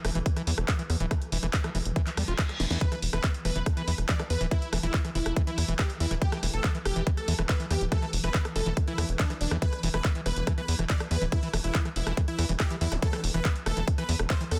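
Psychedelic trance at 141 BPM in E minor, alien and driving, where a tight, punchy sequencer bass and an up-front electronic kick entering at 0.3 seconds push beneath a techno kit with cracking snare, handclaps and rim clicks, a squelchy, resonant acid line sits back in the mix with distortion, chorus, tape echo and sidechain pumping, a reverse cymbal and zap arrive at 2.1 seconds just before a huge, detuned supersaw melody enters at 2.8 seconds with phaser and pumping, and a very quiet swarming, granular drone hovers underneath, all within a dense, heavily limited master.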